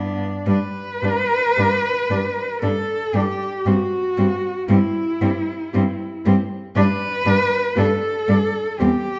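Three bowed cellos open together at 0.0 s with a rich, vibrato-laden bass line, a smooth, even accompaniment set in the background and a distant, expressive second line, before a warm solo cello takes the melody up front at 0.5 s with vibrato and portamento in this lyrical classical excerpt for cello ensemble, unfolding in a rubato 3/4 at 49-61 BPM in G major within the generous reverb of a recital hall.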